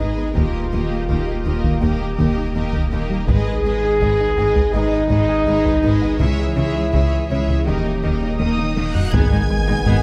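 Vast and relentless, this hybrid orchestral and electronic film-score passage moves at 82 BPM in 4/4, with up-front French horns holding sustained chords over lush bowed strings, a glassy FM pad, a squelchy resonant blip pluck arpeggiating, and a low end of rich cellos, clear double basses and a deep, saturated sub bass, all driven by a heavy-stick taiko ensemble in the background. The chords move from D#add9 through G#m and C#m to D#, and at 8.4 seconds a taiko fill arrives as a rich, focused high violin melody enters above the distant warm violins and clear violas. A huge, bright reverse cymbal and sub drop rises from 8.8 seconds and lands the impact on G#m at 9.1 seconds, joined by vintage-toned trombones, a rubbery wave-folded square bass riff and a mellow, soft tuba, all in a moderate scoring-stage reverb.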